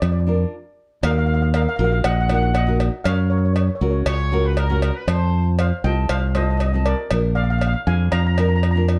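A bright, up-front fingered electric bass, a small-room cowbell and a shimmering steel pan, played with medium rubber sticks on double seconds, open this dramatic, driving calypso excerpt in Eb minor at 119 BPM in a straight 4/4, with a fingerpicked nylon-string guitar joining at 0.3 seconds. A brief stop falls between 0.5 and 1.0 seconds before the groove resumes on an Eb minor chord and moves through Gb, F7 and Bb7. The airy steel pan carries the melody, while the guitar, with fresh strings and a deep classical tone, fills in the accompaniment beneath it. The bass sits low and direct, and the metallic cowbell keeps time further back in the mix. At 4.1 seconds a distant, roomy horn section with light vibrato adds a short pop-style second line before dropping out at 5.5 seconds, all within a dark production touched by light reverb.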